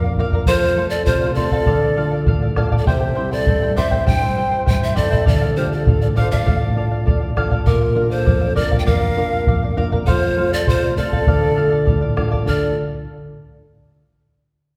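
This Andean folk piece, taken from a longer performance, moves at 100 BPM in a straight 2/4 in D minor, with a mood that is both festive and melancholic. A polished pan flute carries the melody with a breathy, straight tone, tongued attacks with audible chiff and an unsteady quality. Beneath it, a large end-blown quena plays a second line with a mellow, rolled-off sound and gentle vibrato. A fingerpicked charango adds shimmering double strings, some doubled at the octave, while a thumb-plucked nylon-string guitar supplies a dark, full-bodied classical accompaniment. The deep bombo enters at 0.2 seconds, and the chords cycle through F, D minor, C and B-flat. The whole ensemble sits back in a wet recital hall with a 1.7-second reverb tail.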